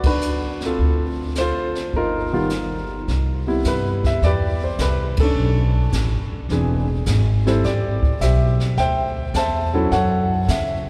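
A band accent at 0.0 s opens this relaxed, swinging jazz piano trio passage, cut from a longer piece, with grand piano, upright bass and brushed drums together from the start at 105 BPM in a lilting 4/4 swing. A smooth, vintage-toned grand piano carries the melody up front, beside a woody pizzicato bass on steel strings, while the drums add dark cymbals, a high-tuned snare and a boomy kick under brushes. The harmony moves from a rootless Gmaj7 into C major at 3.1 s, with another band accent at 5.1 s, all set in a long, wet cathedral reverb that gives the sound of a church or concert hall.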